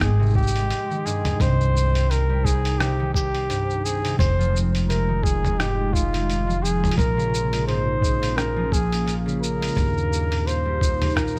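A flugelhorn carries the melody up front in this delicate, intimate folktronica piece, its soft attack and light vibrato giving a jazz-style solo voice trailed by tape echo. Beneath it, a concert harp plays bright, ringing fingerpicked arpeggios while a woody pizzicato upright bass holds the low end. The groove moves at 86 BPM in 4/4 with a gentle swing on the sixteenths. It is driven by a thumpy electronic kick and a lo-fi sampler-style kit of hi-hat, rim click, shaker and toms, both pitched down, muffled, compressed and overdriven, then re-recorded in a small room. A warbling, detuned tape-like pad hangs in the background with chorus and reverb, adding a nostalgic, mellow haze, and vinyl crackle adds a dusty texture. After a brief break from 0.7 to 1.4 seconds, the harmony moves from Cm through Fm7 and Bbm7 to Eb.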